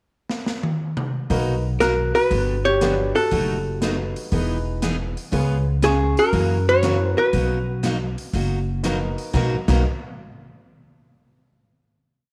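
Cheerful and playful, this short western swing piece in B major bounces along at 119 BPM in 4/4 with a strong swing feel. A polished big-band drum kit opens with a fill from 0.3 seconds, its dark cymbals, medium-tuned snare backbeat, punchy kick and hi-hat timekeeping setting up the groove before the band enters at 1.3 seconds. Up front, a woody, thumpy upright bass on gut strings plays a two-beat root-and-fifth line, while a bright dreadnought acoustic guitar picks four to the bar and a clear upright piano adds syncopated comping in close voicings. From 1.8 seconds a clean, compressed hollow-body archtop guitar carries the motif-based melody in balanced phrases, shadowed by a percussive marimba with hard mallets playing a harmony line mostly in thirds. The chords move from Bmaj7 through Gmaj7, Emaj7 and a C#7 to F#7 turnaround back to Bmaj7, and a moderate echo-chamber reverb gives the whole a roomy sheen before the final chord rings out.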